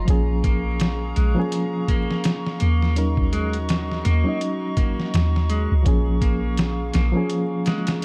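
Trip hop excerpt in Bb minor at 83 BPM with a swung, hypnotic and melancholic feel, built on a pitched-down, muffled sampler-style drum kit with a thumpy kick, a deep, round 808-style bass up front, a reedy, worn electric piano with harmonic tremolo, 12-bit grit and tape echo, a moody, detuned analog pad with chorus, and clean picked guitar arpeggios through digital delay, all moving from Bbm7 to Ebm7 and back under light reverb and vinyl crackle.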